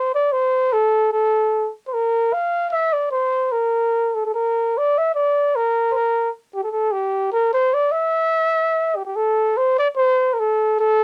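A home cassette recording in a small booth with a wet ambience carries this festive, jolly alpine folk fragment in a swung triple metre, where a solo trumpet sits up front for the full 11 seconds, its dark tone touched with light vibrato and a smooth top as it plays in a classical style, with the tape's character clinging to the horn.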